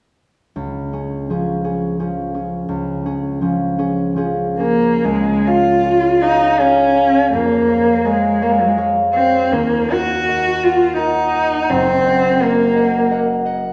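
In a 3/4 with rubato phrasing, the tempo drifts between 67 and 88 BPM in this warm, lyrical romantic classical duo for cello and harp, set in Db major with tuning at A4 = 441 Hz. The concert harp opens at 0.6 seconds, its fingerpicked, ringing accompaniment spanning Gb1 to Gb5 and sitting up front. The cello enters at 4.6 seconds with a bowed melody from Gb3 to Gb4, played by one player with vibrato, portamento and expressive shading, its rich tone at once up front and slightly distant. The harmony rests on Db, then moves to Db/F and on to Ebm and Ebm/Gb across the second section, which begins around 5.0 seconds. A wet recital-hall reverb, heard from further back in the room, surrounds the duo, and the passage is cut from a longer piece.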